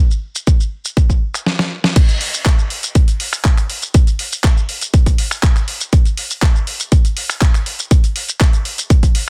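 A punchy, layered electronic kick drum sits up front with a tape-warm character, entering at 0.5 seconds in this groovy, nostalgic house excerpt with a straight feel. Alongside it, a gritty, compressed sampler-style soul kit brings a fat snare, hi-hat, shaker, handclaps, finger snaps and crash cymbal, both kits carrying a small room ambience. A filter sweep and a drum fill lead into the drop at 2.0 seconds, all within a dense, heavily limited modern master with little reverb.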